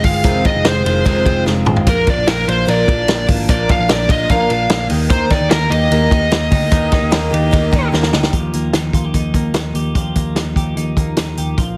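A smooth, dark overdriven lead guitar with slapback echo sings up front over woody, picked twelve-string acoustic guitar, twangy clean twelve-string electric arpeggios, a round, foam-muted vintage bass and a punchy vintage drum kit with fills at 1.5 and 7.9 seconds in this nostalgic, bright jangly indie pop excerpt at 148 BPM in Eb major, moving from Fm7 through Bb to Eb before the lead drops out at 7.9 seconds and the acoustic at 8.3 seconds, as the electric twelve-string, bass and drums carry on over Ebadd9 under light reverb and a heavily compressed radio sound.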